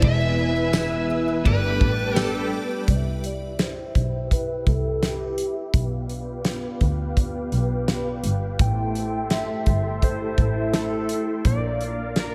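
A dreamy, reverb-soaked mix with a plate sheen sets an ethereal, floating mood for this dream pop fragment at 84 BPM in C major. A dark, overdriven slide guitar carries the melody over sustained, full-bodied string-machine cellos, a boxy, octave-doubled twelve-string acoustic picking arpeggios in the background, and a woody bowed double bass with vibrato, all driven by an up-front, loose indie kit with a fat snare and tight kick. A slightly broken-up electric guitar with tremolo and a bright FM bell with a long, decaying halo both drop out at 3.4 s, just after a filter sweep begins at 2.9 s and carries through the rest of the passage.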